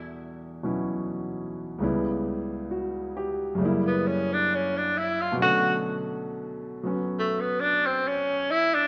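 A clear tenor saxophone with light vibrato and scooped notes enters at 3.9 seconds to carry the melody over a smooth, vintage grand piano accompaniment in this wistful, melancholic jazz ballad in B minor at 68 BPM with a swung feel, both instruments sitting up front in a moderate scoring-stage reverb as the chords move from Em11 through C#m7b5 and F#7b9 to Bm9.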